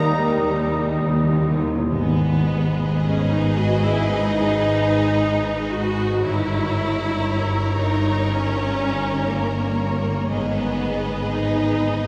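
This elegiac, solemn excerpt from a slow romantic orchestral movement opens with a timpani fill beneath a brief chord from an airy flute section, a warm oboe, a bright clarinet, a mellow bassoon, barely audible French horn and trombone sections, and a very quiet trumpet and tuba, and these winds and brass drop out by 1.7 seconds, leaving the strings to carry on in rubato: a focused violin section sings the melody over a lush second violin line, an up-front viola section, an intense cello section and a clear double bass section, with hard-mallet timpani in the background and the ensemble heard from further back in a long, wet cathedral reverb.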